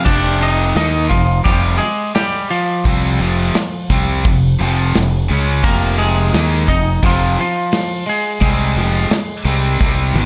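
Brooding and dark, this short cut from a longer quiet-loud alternative rock piece settles on a single F minor chord in a straight 4/4. A clean, twangy electric guitar carries the melody up front from the very start, its picked notes bathed in spring reverb. Beneath it, two bright, picked distorted guitars grind out the riff, one compressed and scooped and sitting in the background, the other tight. A growling fingered electric bass, overdriven and punchy, joins at 0.1 seconds alongside a big acoustic rock kit with a punchy kick, medium-tuned snare, hi-hat, crash and toms. The drums close with a fill from 9.8 seconds, and the whole band sits in a small room ambience.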